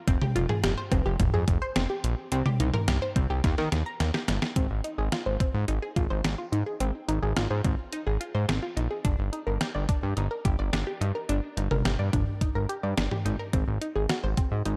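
A fat, thick analog bass, an overdriven 8-bit drum machine and a lush unison pluck all start together at 0.1 s in this nostalgic yet bright synth-pop piece, cut from a longer work and moving at 107 BPM in a straight 4/4. The pluck plays arpeggios from Bb3 to Bb5, its detuned sawtooth voices layered with a sine and a touch of noise, shaped by a punchy filter pluck, a moving notch and a delay that trails each note. Underneath, the bass holds sustained, evolving detuned sawtooth tones between F1 and Eb3, with a fast attack and a filter sweep, sitting up front in the mix. The detuned drum kit has a sampler-style character, with a thumpy kick, fat snare, hi-hat, cowbell and toms, re-recorded in a small room and pushed forward, and a drum fill from 3.4 to 4.6 s leads into the longer second section. The harmony moves from Fsus2 through C5 and Eb to Ab, later passing through a rootless Ebmaj7/G before returning to Ab, all framed by light reverb and a dark production.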